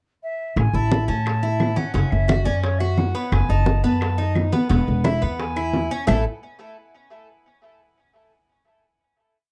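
A syncopated upright bass figure, congas with slaps and open strokes, bongos in steady eighths with hand bell, and a two-bar clave time line set a relaxed, danceable Cuban son and guajira groove at 174 BPM in A major, the rhythm section entering at 0.6 s after the flute's pickup bar and the tres following at 0.7 s. Up front, the thumpy, woody pizzicato bass sits beside a bright, metallic Cuban tres picking an arpeggiated guajeo on double strings with tape echo, while the low-tuned, thick-skinned congas, tight high bongos and woody claves stay in the background. A distant, airy silver concert flute with a crisp attack carries a motif-based melody through tape echo over a dark, warm production in a small room, closing on a final chord at 6.1 s.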